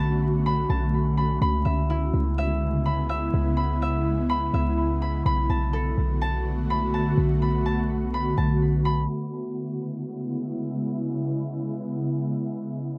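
A half-time 4/4 pulse gives this melancholic, hazy hip hop passage, cut from a longer piece, an unhurried, heavy-lidded sway. An ethereal, airy pad sits up front with sustained chords, its detuned sawtooth and triangle layers softened by a slow attack, long release, ensemble chorus and built-in reverb. Beneath it, a deep, boomy 808-style bass with a sine body and a noise layer hits with a fast attack and decays mellowly until it stops at 9.1 seconds. A fingerpicked concert harp rings out arpeggios above, its acoustic tone trailed by analog delay until 10.2 seconds, leaving the pad alone to carry the closing stretch to 13.0 seconds. The harmony drifts between Bm7 and C#m7, and the whole mix is dusted with vinyl crackle, dulled by a low-pass filter and set in a moderate booth ambience.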